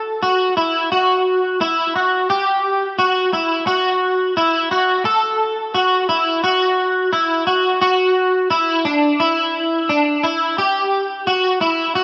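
Dream pop at 87 BPM in a straight 4/4, blissful and ethereal, this short excerpt features a lone electric guitar playing solo for the full 12.0 seconds, picked and sitting up front with a slightly broken-up edge. The guitar runs through ensemble chorus and digital delay, moving between D4 and A4, while a moderate plate reverb with a 2.9-second tail gives the sound a floating glow. A new section begins at 7.8 seconds, carrying the hazy, dreamy mood through to the end.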